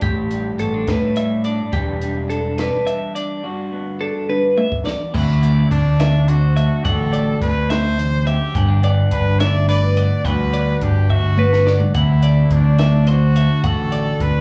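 Heard live through a club's PA with small-room reverb, this playful, intricate math rock and midwest emo excerpt in 6/8 sets a slightly broken-up electric guitar through a small old amp with spring reverb under bright, twangy twelve-string arpeggios with slapback echo. A growling, overdriven picked bass sits up front, and a compact cocktail drum kit with dark cymbals, a high-tuned snare and a punchy kick adds fills at 4.3 and 11.1 seconds. From 5.1 seconds, a clear, softly attacked trumpet with vibrato, slapback echo and digital delay takes the melody.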